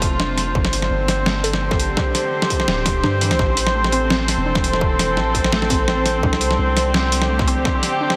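A dreamy mix soaked in a huge ambient reverb gives this short cut from a longer piece a spacious, cinematic feel. It is half-time drum and bass in A minor at 169 BPM in 4/4, with a light swing on the sixteenths. A dark, nasal chamber string section sits up front, holding bowed chords with a reedy gut-string tone and a smooth top, and sidechain pumping moves through its sustain. Underneath, a deep, sine-like 808-style bass holds long decaying notes with tube saturation until 7.6 seconds. A gritty, pitched-down sampler kit of hi-hat and overdriven snare, compressed and up front, plays alongside a distorted electronic kick from the start, both carrying small-room ambience. From 0.2 seconds a warbling, lo-fi, detuned pluck plays arpeggios in the background through phaser, subtle chorus and delay, while the harmony moves from F through Gsus4 and Am to Csus2.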